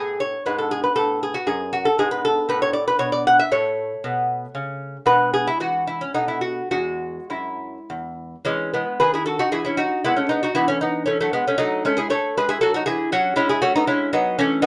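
In a moderate studio reverb with a live-room feel, this radiant, serene excerpt of a baroque-style classical dance in triple time features a solo lute, fingerpicked up front with the delicate, warm ring of its doubled gut strings, some octave-doubled, moving through a freely rubato phrase before a second section begins at 8.5 seconds and runs to 14.7 seconds.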